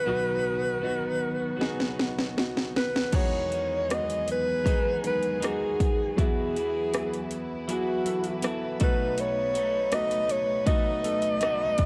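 A breathy alto saxophone carries the melody up front in this tender, emotional pop ballad, its close-miked subtone and vibrato lending a jazz-style intimacy at a slow 79 BPM in a straight 4/4. Beneath it, a clear concert grand piano with deep bass and short sustain provides accompaniment, while a bright, twangy twelve-string electric guitar picks out compressed arpeggios coloured by warbly pitch drift and tape echo. A lush studio string section holds smooth, bowed chords far in the background. At 1.6 seconds a punchy, overdriven electronic drum kit enters up front with a fill, its cracking snare and metallic hats cutting through, then settles in as the harmony moves from B through G#m7/E and Esus2 to B7. The whole piece carries the soft grain of a cassette home recording in a small, lightly reverberant room, and it is cut from a longer piece.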